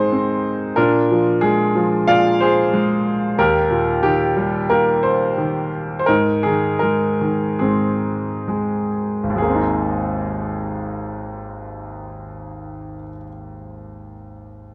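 Flowing in a rubato 4/4 that drifts between 65 and 93 BPM and slows from 3.4 to 9.4 seconds, this hopeful, lyrical classical excerpt in Ab major features a solo grand piano, brilliant, natural and up front, ranging from deep bass to the upper middle register over chords moving from Ab through Bb7 and Eb to Abadd9, heard through moderate studio reverb and a worn, warbling cassette tape sound with dulled highs and wavering pitch.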